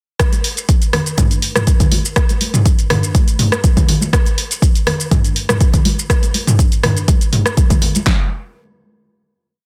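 A straight 4/4 house groove at 122 BPM opens at 0.2 seconds, driven by a four-on-the-floor kick from a deep house drum kit, joined by a punchy snare and handclaps. A second layer of the same electronic kit supplies the programmed hats and backbeat, with closed and open hi-hats, shaker, rim click and low toms, sitting slightly beneath the kick and snare. Both drum layers are overdriven and re-recorded in a small room, so they come across as gritty and up front. Warm acoustic congas weave interlocking muted, high and low tones lower in the mix, giving the hypnotic, spiritual mood an earthy human pulse. The piece is essentially one sustained drop that runs until 8.1 seconds and closes with a final hit, its dry sound held in a dense, heavily limited modern master.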